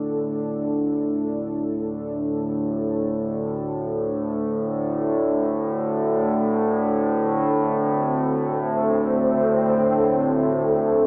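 This dark ambient drone, cut from a longer piece, drifts in free time with a desolate, unsettling mood. An analog drone holds the low register from D2 to A2, its vintage sawtooth and pulse-wave tones warbling and evolving under pulse-width modulation, with a slow attack, long release and chorus, and it fades in across the full 11.1 seconds. Above it, a sweeping resonant pad sustains chords between A2 and A4, blending detuned sawtooth, triangle and sine layers with a sub octave, a filter swell and a bright edge, also treated with chorus. Both parts sit up front over a single D5 chord. A wet plate reverb surrounds them, while a small-speaker character gives the recording a boxed-in feel.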